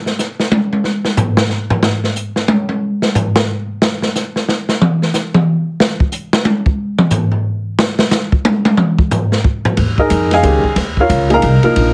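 A heavily compressed, radio-like sound with moderate studio reverb frames this short modal jazz excerpt in a swinging 3/4 at 181 BPM, its mood open and searching. A dark, smooth acoustic drum kit with dusky cymbals, a boomy kick, medium-tuned snare, hi-hat, ride and toms carries a solo from the start until 9.8 seconds. Then a thumpy, woody pizzicato upright bass enters on an Eb9sus4 chord, joined a moment later by an intimate upright piano, up front with audible action noise.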